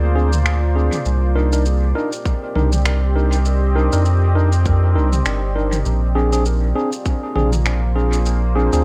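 Ambient dub at 100 BPM in C minor, this short excerpt from a longer piece feels meditative and deep, with a 16th-note swing giving the groove a gentle lilt. A dark, moody pad of detuned sawtooth unison and a sub-octave sine holds sustained chords under chorus and its own reverb, its slow attack and long release keeping it mellow while the harmony moves from Bb9 to Cm9 and back to Bb9 at 5.9 seconds. A round sine sub bass sits up front, warm and sustained with a fast attack and a touch of tube saturation. Clean tine electric piano stabs, heard through a combo amp, enter at 0.2 seconds and carry dub echo. An organic electronic kit of finger snaps, shaker and toms sits low in the mix with studio reverb and dub echo, while a tight, up-front electronic kick joins at 2.3 seconds and drops out at 7.2 seconds. The overall sound is a digital ambience built on a heavy wash of echo.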